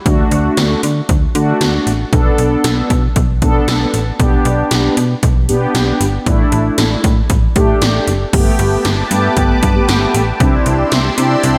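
Overdriven 80s electronic pad drums with a punchy kick, gated snare and metallic hats drive this bright, upbeat synth-pop excerpt at 116 BPM, as up-front mellow synth brass, round and detuned through chorus, and a snappy, digital slap-like FM bass move through D, Bm7, G/B and Asus4, before a lush, thick unison pad with chorus and phaser enters at 8.3 s over Gadd9 and Cadd9, the mix set in a big, arena-like hall reverb.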